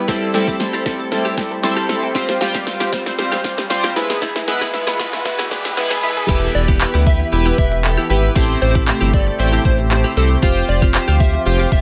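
Energetic and confident, this dance-pop excerpt opens with glossy, chorused retro synth keys, a warbling resonant pad, a lush unison pluck arpeggio with dub echo, a bright clean electric guitar riff and a knocking, fat-snared R&B drum kit through a build-up and drum fill, joined at 3 seconds by a very quiet riser. It then drops at 6.3 seconds as a deep, round analog bass enters, followed moments later by a catchy plucky unison lead with vibrato, the keys, pad and bass pumping under sidechain and the whole sitting in light reverb.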